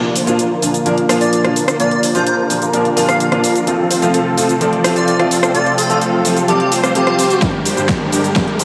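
Huge, detuned supersaw chords lead this anthemic, euphoric festival progressive house build-up in Bb major at 128 BPM. Their bright sawtooth riff is colored by phaser and analog delay and pumps against the beat as a filter sweep moves through them across the whole 8.6 seconds. Beneath them, a thick, warbling vintage pad holds sustained chords with chorus, swept by its own filter, while a warm grand piano adds intimate accompaniment where its action noise can be heard. An airy, dreamy lead enters at 1.2 s with a soft, vibrato-touched sine tone and a noise layer, carrying the melody through chorus and delay. The big-room drum kit drives with a huge, overdriven snare up front, hi-hat, cabasa and rim clicks, and a punchy, layered electronic kick arrives at 7.4 s as a drum fill lands on the move to G minor. A very quiet riser runs throughout, and the whole mix is soaked in a lush hall reverb that gives this short cut from a longer piece a floating, festival-sized glow.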